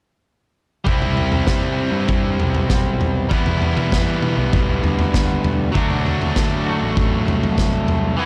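Indie rock at 98 BPM in a straight 4/4, this short cut from a longer piece feels restless and bittersweet, moving through Cmaj7, Em7 and D. An overdriven electric guitar carries the riff up front with a bright, picked edge, entering at 0.8 seconds. Beneath it sit a fuzzy, overdriven picked bass in the background and a vintage acoustic drum kit with a punchy kick, a medium-tuned snare, toms and a rolled-off top. At 5.7 seconds a clean, twangy second guitar slips in behind them with a riff coloured by analog chorus and analog delay. The production is dark and warm, with little reverb and some lossy compression artefacts.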